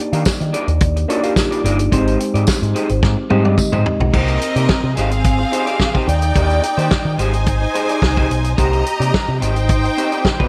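A punchy soul drum kit sits up front in this danceable, celebratory disco excerpt at 108 BPM, its fat snare, dark cymbals and rolled-off top bathed in gated reverb, with a drum fill from 3.0 to 4.1 seconds. Beneath it, a picked electric bass runs through an envelope filter for a round, dark, amped tone, while a slightly broken-up, lo-fi electric guitar through a small old amp adds picked accompaniment with subtle chorus. A worn, slightly out-of-tune tine electric piano with phaser opens the excerpt over Ebmaj7 and Abmaj7 chords, joined by a jingly, band-limited vintage tambourine, and both drop away by 4.2 seconds. At 4.1 seconds a lush, bowed studio string section enters as a second line, close and focused with vibrato, carrying the music through Cm7, Abmaj7 and Ebmaj7 changes. Light reverb and a small room ambience frame the whole groove.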